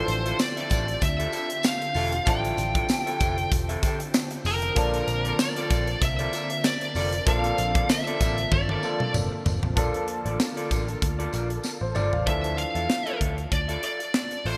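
A bright, polished 1980s-style digital production bathed in lush hall reverb frames this moody, nostalgic pop excerpt in D minor at 96 BPM, with a light sixteenth-note swing as the harmony moves from Dmadd9 to Bbmaj7 and back. A distorted, high-gain lead guitar carries the melody up front, over a clear baby grand piano, a twangy, slightly broken-up riff from an electric guitar through a small old amp with subtle chorus, and soft, organ-like ensemble strings with ensemble chorus that sit in the background until 12.2 seconds. Underneath, a round, foam-muted picked bass and a punchy drum kit with a high-tuned snare and gated reverb drive the groove, joined by a jingly, band-limited tambourine, with drum fills at 8.5 and 11.6 seconds.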